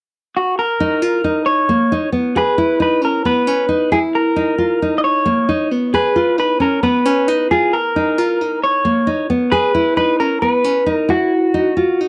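This rock excerpt moves at 134 BPM in a straight 4/4, settling into Eb minor with a wistful, intricate mood and tuning pitched at A4 = 439 Hz. An electric guitar played through a small old amp carries the melody from 0.4 seconds, its fingered tone slightly broken-up, compressed and lo-fi, sitting up front between Gb4 and Eb5. At 0.8 seconds a nylon-string guitar joins with fingerpicked arpeggios between Bb3 and G#4, full-bodied and deeply classical in character, with audible finger squeak keeping it close and human. The harmony cycles through Eb5, Emaj7, Bbmadd11 and Db7 before returning to Eb5 and Emaj7, then closing on Ebmadd9. Light reverb and a dark, warm production wrap both guitars, which stay prominent together until the cut at 12.1 seconds.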